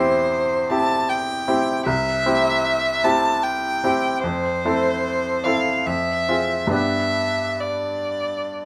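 Romantic classical music for violin and grand piano, this brief excerpt has a warm, serene mood and moves in an unhurried triple metre with a flexible, rubato feel. A single bowed violin carries the melody in its upper-middle register, its tone rich, smooth and even, with vibrato, sitting up front. Beneath it, the grand piano supplies the accompaniment across a broad span from deep bass to the midrange, its sound bright, brilliant and polished, with short sustain. The harmony shifts from C-based chords to Fmaj7, darkens briefly to Fm, and reaches G near 6.7 seconds. Both instruments play together throughout the 8.7 seconds, framed by a light reverb.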